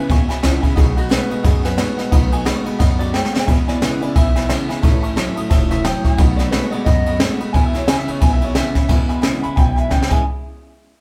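A rollicking, upbeat rockabilly passage, cut from a longer piece, opens in E major at a swung 177 BPM with a twangy electric guitar through a small old amp carrying the melody. Beneath it, a compressed electric guitar at the edge of break-up plays a riff bathed in spring reverb, joined by a fresh-stringed, picked steel-string acoustic guitar in the background and a metallic, jangly tack piano. A woody, thumpy pizzicato upright bass and an up-front jazz brush kit with dark cymbals and a boomy kick enter at 0.1 s, and the drums play fills at 3.1 s and 9.9 s as the band, playing live in a small room with moderate ambience, moves through E, B7 and A.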